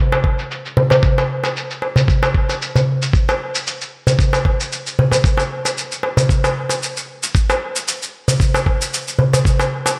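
Downtempo groove at 114 BPM in 4/4 with a light sixteenth-note swing, carrying an earthy, hypnotic mood through this short cut from a longer piece. A thumpy, gritty electronic kick drum sits up front from 0.2 to 9.6 seconds, its sampler-style sound compressed and re-recorded in a small room. A metal-shell darbuka plays throughout, crisp and acoustic yet compressed and saturated, placed close and forward in the mix. A shaker runs the full length, quieter and grainy, its sampled tone re-recorded in a small room and softened by a low-pass filter on both the hit and its ambience. A moderate plate reverb and bright digital production in a 1980s style frame the percussion-only arrangement.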